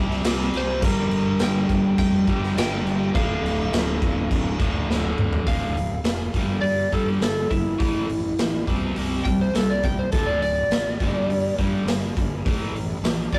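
A rough rehearsal-room recording with warm saturation and a stone-room reverb frames this aggressive, heavy hard rock excerpt in D minor at 103 BPM, where a biting, double-tracked overdriven guitar riff sits up front over a punchy fuzz bass and a raw garage drum kit with a boomy kick, while a twangy, slightly broken-up lead guitar carries the melody and, after a drum fill at 4.9 seconds, takes a solo from 5.5 seconds to the end.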